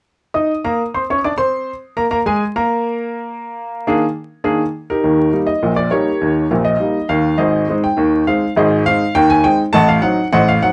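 A lone upright piano opens this lively, playful ragtime fragment at 0.3 s, its woody, intimate tone sitting up front with audible action noise and long sustain under a vinyl crackle. Moving in a straight two-beat feel across a range from deep bass to bright treble, the solo shifts into a second strain at 5.0 s and reaches a diminished chord at 9.7 s before the cut. A moderate studio reverb gives the polished playing a touch of room.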